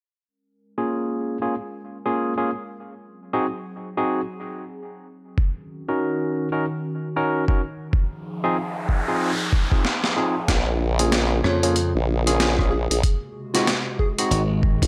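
A barky, lightly overdriven tine electric piano opens this playful, gritty glitch hop excerpt at 94 BPM in Bb minor, its stabs carrying 12-bit sampler grit, analog delay and sidechain pumping while a filter sweep moves over it and a warbling, nostalgic tape-like pad holds sustained chords beneath, both cycling through Bbm7, Ab7, Ebm7 and Fm7. A thumpy, pitched-down electronic kick arrives at 5.4 s. At 9.8 s a boom bap sampler-style kit with a high-tuned snare, rim click and hi-hat joins, and its drum fill and an electronic noise sweep lead into the second section at 10.5 s. There a wobbling formant-sweep bass with chorus and a bright, punchy slap bass fill the low end, while a catchy, detuned plucky unison lead sits in the background, all within a dry, gritty hardware recording touched by light digital ambience.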